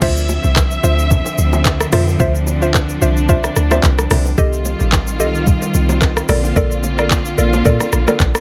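Late-night and deep, this amapiano excerpt moves at 110 BPM in 4/4 with a light swing on the sixteenths, sitting in D minor and cut from a longer piece as it drops straight in at the start. A lush, bowed studio string section holds sustained chords throughout, moving from Dm9 to F9 at 4.4 seconds and Bbmaj7 at 6.3 seconds, its smooth ensemble tone breathing with sidechain pumping. A woody, mellow mallet-like synth pluck adds stabs with chorus and digital delay, while a round, dark log drum bass with a fast attack and decaying tail carries the low end. The electronic R&B drum kit sits up front with a soft kick, metallic hats, handclaps, rim clicks, shaker and crash, its sound tape-warm and produced. Bright, compressed congas and bongos played with soft hands stay in the background, and the whole mix is dry, with little reverb.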